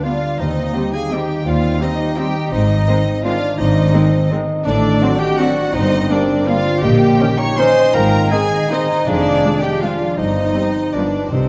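In a rubato 3/4 at 150-184 BPM, this dark, bittersweet classical excerpt in C minor sets a rich chamber violin section on the melody, shadowed by second lines from clarinet, hollow flute and a distant studio violin section, over mellow bassoon, a smooth viola section, very quiet sustained chords from French horns and a punchy trombone section, and a ringing, thumb-plucked concert harp in arpeggios. A lush cello section and an expressive double bass section carry the bass from 0.4 s, and timpani struck with medium mallets arrive up front only at 11.3 s. The harmony moves from Cm/Eb through Ab, D7/A and Ddim/F to a closing G7, all bathed in a dark, wet concert-hall reverb.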